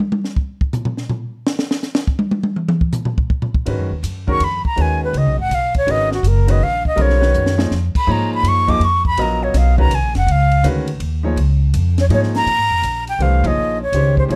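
A dark, lightly reverberant production frames this searching, spiritual modal jazz in a swung 3/4, cut from a longer piece: a compact cocktail drum kit with dry, dark cymbals, a high-tuned snare and a punchy kick plays alone until 3.7 s, when a woody pizzicato upright bass and a deep-toned concert grand piano join, and a breathy, close-miked concert flute with a soft attack carries the melody from 4.3 s.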